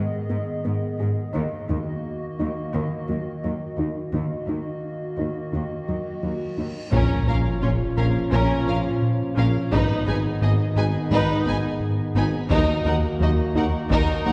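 A distant, wet scoring-stage sound with a dark, softened top frames this brooding, vast excerpt of a hybrid orchestral and electronic film score in Eb minor at 86 BPM, opening with a warbling, lo-fi tape-like pad holding sustained chords, a soft round pluck tracing arpeggios with tape echo, and a clear cello section on the bass line. A huge reverse cymbal and sub drop at 6.7 seconds leads into an impact at 6.9 seconds, where lush symphonic violins take the melody over a background studio violin line, smooth violas, mellow French horns, a very quiet tuba and double basses, and hard-stick taiko drums. Riding prominently underneath is a deep, round analog bass riff, while the chords move from Bbm through Abm back to Ebm.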